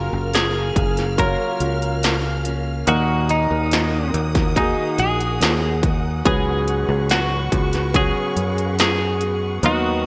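Heartfelt and hopeful, this bright 1980s-style pop ballad excerpt sets a twangy twelve-string electric guitar melody over clear baby grand piano with lush chorus, distant bowed strings with expressive vibrato and portamento, very quiet picked steel-string acoustic arpeggios with finger squeak, a growly fingered electric bass, and an up-front industrial drum kit whose distorted kick and clanging snare ring with gated reverb from 0.3 seconds, all in a moderate digital hall.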